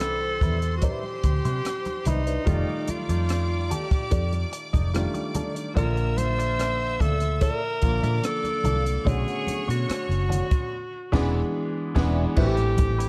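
At a relaxed 73 BPM in a straight 4/4, this silky, smooth 1970s-style soul excerpt sets an up-front tenor saxophone with vibrato and scooped notes over biting, bright violins that drop out at 12.2 seconds, an intimate baby grand with audible action noise, a compressed wah guitar riff in the background, a round, foam-muted bass, a dry cocktail kit with a punchy kick and high-tuned snare, and soft-handed, ringing congas, all in a dark, lightly reverberant mix that features a band accent from 10.7 seconds as the chords move from Cmaj9 toward Am9.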